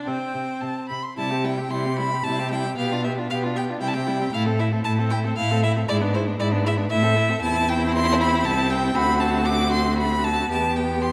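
Lively and cheerful, this short passage from a quick classical-period movement for string quartet moves at 116 BPM in 3/4 in C major, taken with a rubato feel. The first violin carries the melody high and up front with a rich, smooth, even tone and vibrato, while the second violin adds a second line beneath it with the same bowed richness. The viola fills in the accompaniment with a clear, close sound, and the cello anchors the bass, focused and up front. After a brief opening, the harmony wanders from C through G7/B and A minor to E7/G#, then past D7 to settle on E minor around 10.5 seconds. A scoring-stage reverb with a 1.6-second decay wraps the ensemble in a wet, spacious glow.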